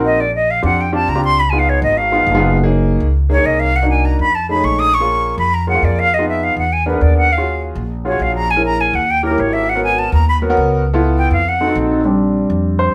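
A brisk, straight 4/4 pulse drives this sunny, danceable jazz excerpt, with pizzicato upright bass giving a woody, growly foundation beneath a concert grand piano that sounds intimate, with deep bass and audible action noise. Up front, a breathy concert flute plays the solo from 0.1 to 11.8 seconds in a tongued, straight tone with rolled-off highs, soaring over a dense run of extended and altered chords. The band plays live in one room with moderate studio reverb, giving the sound a natural, close feel.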